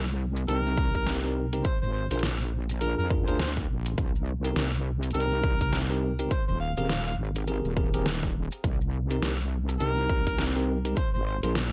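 A dry, gritty hardware recording with little reverb carries this funky glitch hop excerpt in C minor, set at 103 BPM in 4/4 with a swung sixteenth-note feel over a Cm7, Bb7 and Abmaj9 progression. An up-front, saturated wobble bass of detuned sawtooth and sine layers anchors the low end alongside a punchy electronic kick that enters at 0.8 seconds, while a dubstep kit of hi-hat, rim click and deep snare, re-recorded in a large room, drives the groove and grainy, mellow maracas sit in the background. Over this, an amplified, overdriven harmonica solos in jazz style with light vibrato, tongue slaps and scooped notes through analog delay, and a bell-like tine electric piano adds bright, clean stabs that pump with sidechain.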